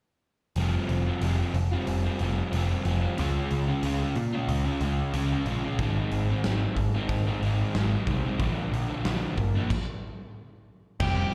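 This sounds like a live gig heard through the venue's PA, with a light recital-hall reverb around it. It is a short cut from a longer classic rock piece with a sunny, confident mood, in straight 4/4 at 92 BPM and tuned to A4 = 441 Hz. A crunchy, double-tracked overdriven guitar sits up front playing the riff, with a slapback echo on it. Beside it is a growling, bright picked electric bass, also overdriven and up front, while a big acoustic rock kit with a punchy kick, medium-tuned snare, hi-hat and crash sounds dark and smooth with its top rolled off. The riff moves through Fsus2, Db, Ab and Bb, and a stop arrives at 9.7 s. At 11.0 s an octave-fuzz lead guitar cuts in on a single distorted G4 just before the cut ends.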